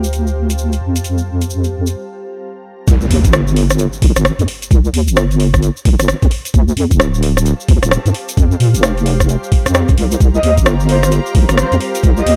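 Bouncy and soulful, this 131 BPM two-step UK garage excerpt in C dorian swings on a deep, saturated wobble bass with chorus and a garage kit of metallic, overdriven hats and rim clicks, joined by a grainy egg shaker and a cloudy granular pad that pumps, falls away for a stop at 2.0 seconds, then gives way to a drop at 2.9 seconds where a gritty, thumpy pitched-down kick and an electronic impact land, before the pad returns and a breathy flute-like lead with vibrato and digital delay appears at 10.3 seconds.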